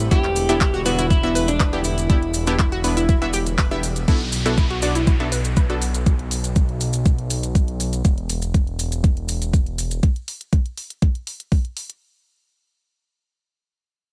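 Progressive house at 121 BPM in a straight 4/4, this driving, emotional passage is cut from a longer piece and opens on a drop over Em7 before moving to Bm7 at 4.1 seconds. An overdriven, knocking electronic kick sits up front with a layered pop kit of handclaps and hi-hat, while grainy maracas stay close and dry in the background. A fat, nasal, detuned analog bass pumps against the sidechain beneath a very quiet, smooth pad, a drifting glassy texture and a soft FM synth bell that carries a second line beside the dark, slightly broken-up electric guitar melody through digital delay. Punchy unison stabs and a round, bright analog pluck arpeggio, chorused and delayed, fill the upper register, and the guitar, bell, pad and texture all fall away by about 4 seconds. In the second half a filter sweep rides the arpeggio as an electronic downlifter descends from 4.1 seconds, and at 8.0 seconds the harmony drops out, leaving the bass, drums and percussion in a dry space with little reverb.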